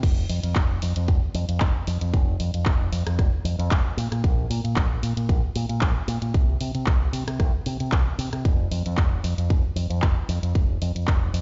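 A fingered electric bass run through an envelope filter anchors this nu-disco drop, sitting bright and up front with a direct, amped tone as it moves between F1 and C3. Alongside it, a punchy electronic kick drum, layered and produced, also sits close and forward, re-recorded in a small room. A pop drum kit fills in the kit work with crash cymbal, handclaps, hi-hat and rim click, its layered, produced sound likewise re-recorded in a small room but set lower in the mix. The groove runs in 4/4 with a light swing on the 16ths, giving the sleek, cosmic mood a subtle lilt across the full 11.4 seconds of this fragment cut from a longer piece. The whole recording carries the character of being played on a big sound system in a bare room, with a stone-room reverb tail on the overall sound and the top end rolled off above 7.6 kHz, lending it a dusky, enclosed cast.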